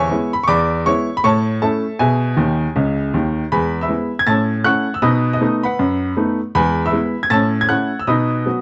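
Exuberant and swinging, this brief stride jazz passage, cut from a longer piece, features a lone upright piano whose clear, woody tone has a short sustain and sits up front. A piano fill from 2.4 to 3.5 seconds leads into a second section that runs to 8.6 seconds. The dry, close sound has the feel of a 1970s studio, with just a touch of small-room reverb.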